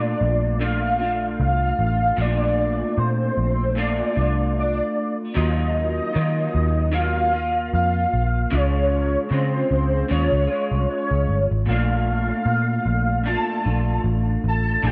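A gently swung sixteenth-note feel in 4/4 carries this laid-back, nostalgic slice of indie and bedroom pop, cut from a longer piece, as the chords move from Bbmaj7 through Ebmadd9 and Dbmaj7 before returning to Bbmaj7 at 11.7 seconds. A mellow, round synth lead with a sub octave and a wave-folded edge sings the melody up front, bathed in chorus, plate reverb and tape echo, while a dark, slightly broken-up electric guitar through a small old amp, lo-fi and compressed, supplies the accompaniment with chorus, vibrato and plate reverb. Underneath, a foam-muted vintage picked electric bass, amped and prominent, anchors the low end, all heard in a moderate studio room.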